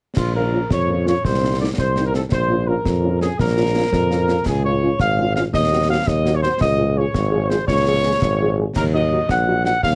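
A dark, lightly reverberant recording of a military-style wind band march in 6/8 with a martial, resolute mood, cut from a longer piece, where a mellow trumpet section carries the melody up front with light vibrato and soft attacks, a clear solo tuba holds the bass, a distant, roomy French horn section fills in the background, and close, dry concert snare drum, dark clash cymbals and concert bass drum complete the minor-key ensemble.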